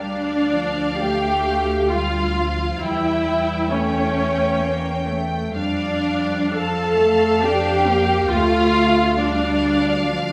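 Set in a rubato three-beat pulse, this solemn, yearning fragment of a slow romantic movement for string orchestra sets a distant, vibrato-rich violin section on the melody above a second violin line with a smooth top, while a lush, close viola section carries the accompaniment up front and a rich cello section and warm double bass section bow the bass through a wet recital-hall reverb, all five parts sounding together from 0.0 to 10.3 seconds.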